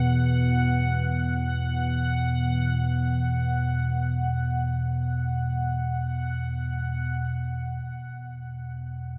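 The deep, rumbling drone sits up front, a detuned blend of triangle and sawtooth tones with a nasal, ominous edge that swells in slowly, sustains from E2 to B2 over an Esus2 chord, and rings on through its long release until 9.2 seconds. Above it, a bubbling, resonant sawtooth texture at F#5 moves through random filter steps, treated with chorus and quieter than the drone, until it stops at 7.9 seconds. This dark, desolate ambient piece in free time is cut from a longer work and drifts in a huge, wet reverb that hangs for eight seconds.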